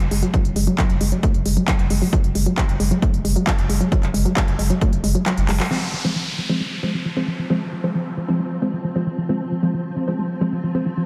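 Driving peak-time techno with a dark, industrial mood: a punchy, tape-warm kick, a handclap-and-hi-hat kit with smooth pumping hats, and a thick, saturated sine sub bass power the opening beneath a warbling, lo-fi, detuned pluck riff steeped in chorus and diffuse delay, until the kick drops out at 5.3 seconds for a drum fill and band accent; then a crisp, bright wavetable stab sounds an Fm chord through tape echo over an electronic downlifter, joined at 6.8 seconds by a swarming, granular, evolving drone with a slow attack, in a dreamy mix soaked in lush hall reverb.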